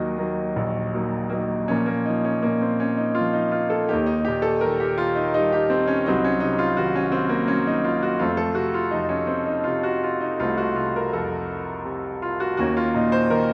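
A bright baby grand piano opens alone on an E-flat minor chord, then moves through a bare B-flat fifth, E-flat, C diminished and F before settling on E-flat minor seventh at 12.6 seconds, in this reflective, dark classical piece in B-flat harmonic minor. The playing is lyrical and rubato in a slow 6/8 at 55 dotted-quarter beats per minute, ranging from deep bass to the upper middle register. The piano sits up front with long sustain, carried by a moderate concert hall reverb, and the passage is cut from a longer piece.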